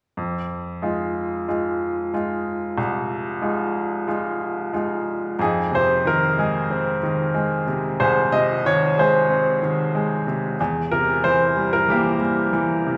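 Intimate and heartbroken, this folk piece features a lone upright piano carrying the melody at a straight 92 BPM in 4/4, its brilliant, woody tone sitting up front with long sustain and audible action noise. The piano ranges from C2 to Eb5, moving from a first section into a second at 5.4 seconds, with the harmony resting on Fm7 before shifting to C7/E at 10.6 seconds. A wet recital hall reverb surrounds the instrument, giving the fragment the airy resonance of a church or concert hall.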